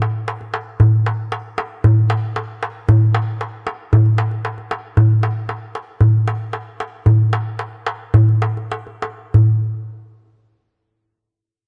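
Cool and moody, this Greek folk fragment in a straight 2/4 at 92-115 BPM features a lone metal-shelled darbuka, crisp, close and up front in a dry room, playing from the start until 9.6 seconds and slowing down between 7.1 and 9.3 seconds just before a new section begins.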